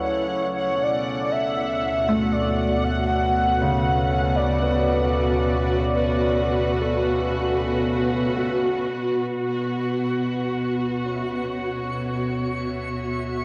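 A worn, warbling cassette haze and a vast cathedral reverb surround this serene, weightless ambient passage, cut from a longer piece, moving at a slow 59 BPM in D major over a Dmaj7 chord. A velvety, detuned synth lead carries the melody with chorus, vibrato and tape echo, then falls silent at 7.9 seconds. Beneath it, a studio string section holds sustained bowed chords up front with soft, sul tasto vibrato. A felt-muted upright piano sits mellow in the background, playing arpeggios through tape echo, while a deep, ominous drone rumbles on D2 and a reedy, breathing harmonium adds a nasal, dark drone. From 9.8 seconds a twinkling granular texture with an octave-up shimmer sparkles faintly high above, as a synth drone fades in during the closing stretch.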